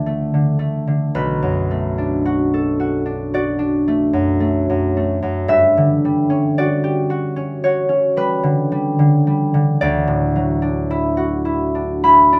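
A fingerpicked concert harp rings out alone and up front in this dreamy, serene classical excerpt, its warm acoustic tone spanning B1 to B5 as it moves with a rubato feel in 4/4 through Gsus2/D, Bm7, Gmaj7#11 and Dadd9, set in a moderate studio reverb.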